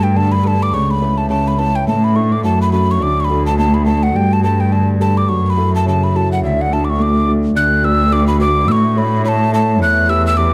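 A lightly reverberant, closely miked recording catches fine detail in this short passage cut from a longer Celtic folk reel, which moves at a lively, cheerful 211 BPM in 4/4 with a swung eighth-note feel in D major. Up front, a mellow, hollow mid whistle carries the melody between E5 and F#6, its metal body giving an airy tone with a crisp, chiffy attack and vibrato. Beneath it, a Celtic harp provides thumb-plucked, ringing acoustic accompaniment in the middle register. A single bowed cello anchors the bass with a rich, expressive voice, soft attack, vibrato and portamento, sitting slightly louder and also forward in the mix. All three play throughout, moving from the opening section into a new one at 7.6 seconds, with harmonies such as Gadd9, F#m and D giving way to A and Em near the close.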